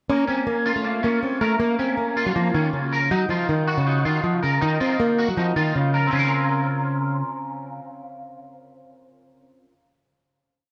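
Hip hop in Bb minor at 159 BPM with a half-time feel, menacing and hard-hitting, built on a fingerpicked plugged-in steel-string acoustic guitar playing a full-bodied, up-front looping melody through a low-pass filter and tape echo until 7.2 seconds, over a clean, twangy electric guitar with an envelope filter and ensemble chorus repeating a patterned eighth-note arpeggio like a sampled loop, moving from Bbm to Ebmadd9 in the hook before settling on a final Bbmadd9 chord at 6.1 seconds in an echo-heavy mix with light reverb.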